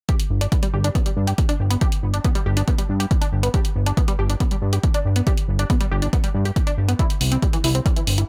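This dry, close-sounding cut from a longer uplifting trance track moves at 139 BPM in a straight 4/4, holding on G major before shifting to C at 7.0 seconds. A punchy electronic kick sits up front, its analog character re-recorded in a small room. An electronic hi-hat shares that roomy analog grit, with sidechain pumping breathing through it. Underneath, a fat analog bass blends sawtooth, square and sine tones into a thick, saturated, wave-folded low end with a filter sweep and a mellow sustain, also pumping against the sidechain. Above it, a tight, driving sequenced synth spins arpeggios from 0.1 to 8.2 seconds: a detuned sawtooth-and-triangle pluck coloured by chorus, phaser, dub echo and sidechain pumping, giving the passage its soaring lift.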